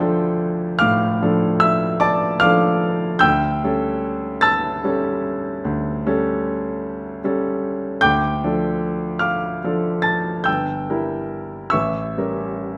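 A warm, vintage-toned grand piano sits up front and carries this romantic classical nocturne entirely alone, its smooth sound spanning from G1 up to A6. The mood is wistful and melancholic, set in D minor and moving in a slow 12/8 at roughly 42-52 BPM, felt in dotted quarters and shaped with free rubato. The harmony rests on D minor at the start before shifting to an A7 over D at 3.2 seconds, then returns to D minor and darkens through a diminished chord over G toward a tense A7b9 at 11.7 seconds. A moderate recital hall reverb gives the piano a natural sense of space around its close, intimate presence. This brief passage of about 12.8 seconds is cut from a longer piece.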